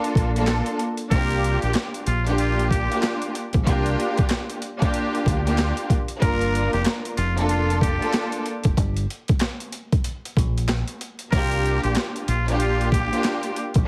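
Boom-bap hip-hop at 94 BPM with a swung 16th feel, reflective and dark, built on a gritty, pitched-down sampler drum kit with a thumpy kick, high-tuned snare, hi-hat and handclaps, overdriven and up front, alongside a round, deep fingered electric bass from 0.2 seconds. A lush bowed string section with vibrato and portamento carries the Gm7 to C7sus4 harmony through a cassette-tape haze, while a nasal, raspy trumpet in a straight mute enters at 1.1 seconds with scooped, growling jazz-style phrases through a digital delay, and a break arrives at 8.8 seconds. The dry mix has a heavily compressed radio sound dusted with vinyl crackle.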